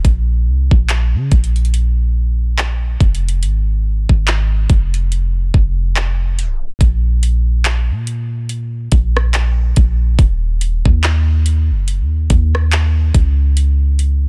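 Moody and late-night, this contemporary R&B cut moves at 71 BPM in 4/4 with a 58% swing on the sixteenths, pairing an up-front soft 808-style bass, deep, round and dark with fast-attack decaying sine notes from Eb1 to Db3, with an electronic smooth R&B kit of knocking kick, metallic hi-hats, handclaps and rim clicks, all dry and densely limited, with a tape stop at 6.4 seconds before the second section arrives at 6.8 seconds.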